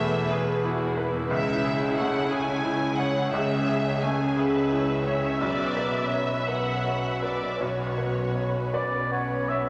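In a slow, rubato 6/8 lilt, this cinematic, emotional film score excerpt unfolds with a moving, longing mood over chords of E, C#m and Bmadd9. A rich, smooth violin section carries the melody from a distance, while a darker violin section sings a second line in the background, and a rich viola section, smooth and even with vibrato, fills in the accompaniment. A bright, brilliant grand piano sits up front and intimate, its long sustain and audible action noise giving the texture a close presence. A ringing, thumb-plucked concert harp spins arpeggios in the background, anchored by an expressive cello section and a clear, lush double bass section on the bass. At 8.7 seconds a warm oboe steps forward with a brief second line of light vibrato, all set within the long, wet reverb of a scoring stage.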